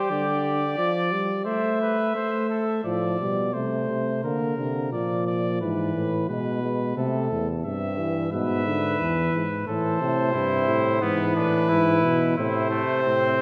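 A straight, even 4/4 pulse carries this contemplative, serious passage, drawn from a longer imitative canzona for brass ensemble in the classical style. The cornet leads the melody from the start with a punchy, up-front tone, joined by the trumpet on a second line. The mellow euphonium supplies accompaniment with light vibrato and a smooth top. At 2.8 seconds the bass trombone enters, up front with a soft attack and gentle vibrato, as the trumpet drops out; the trumpet returns at 8.3 seconds. The ensemble sits in a generous, reverberant scoring-stage space that lends the brass a glowing halo.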